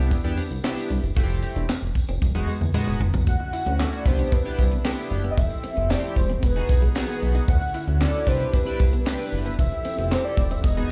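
This smooth, feel-good slice of early-eighties boogie funk opens on a glossy chorused polysynth with a sub octave and filter sweep, a clean, compressed electric guitar riff bathed in lush chorus and slapback echo, and a nasal pulse-wave synth bass sitting up front. A tight funk drum kit and a jingly, distant tambourine join almost at once. The dry acoustic kit, with its high-tuned snare, tight kick, hi-hat, handclaps and toms, plays a fill from 2.2 s into the change at 3.3 s. There a velvety synth lead with a detuned sawtooth tone, vibrato and slapback echo takes the melody, while a soft-attack, floating studio string section sustains bowed sul tasto chords in the background. The straight 4/4 groove cycles through major-ninth chords, Cmaj9, Fmaj9, Emaj9 and Dmaj9, and the band sounds like a live gig heard through the venue's PA, with club reverb and small room ambience, in a clip cut from a longer piece.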